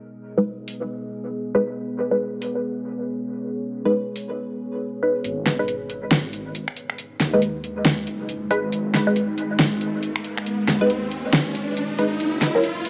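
A swung, half-time 138 BPM groove in 4/4 drives this cavernous, heavy deep dubstep excerpt in G# minor, with an overdriven, up-front deep house kit of fat snare, metallic hats and finger snaps entering at 0.7 seconds over a moody, chorused ambient pad and muted, detuned sawtooth chord stabs coloured by phaser, 12-bit sampler grit and dub echo. Filter sweeps move through the pad and the stabs. From 5.2 seconds a rumbling, beating saw bass sits in the background as the music builds, joined by an electronic riser from 7.1 seconds before the harmony shifts from G#m to F# near the end of this dry, gritty recording with light reverb.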